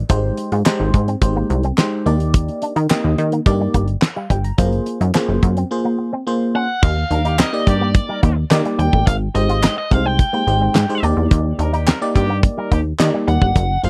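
Early-eighties boogie funk in Eb major at 107 BPM, this smooth, danceable clip from a longer piece rides a straight 4/4 groove. A punchy, plucky analog bass with a fast filter pluck sits up front beside a damped 70s drum kit with a fat snare, tight kick and rolled-off top, while crisp group handclaps sound distant in the background. A glassy FM electric piano with a bell-like attack, chorus and phaser fills out the chords, which move from Abmaj7 to Ebmaj7 and Gbmaj9#11, and a twangy, scooped electric guitar through an envelope filter plays a clean picked riff. During a break from 5.7 to 6.8 seconds, a biting, overdriven lead guitar enters at 6.6 seconds to take the melody, and a dark, vintage horn section with vibrato adds a quiet second line from 7.1 seconds. The dry, close studio sound keeps every part present and intimate.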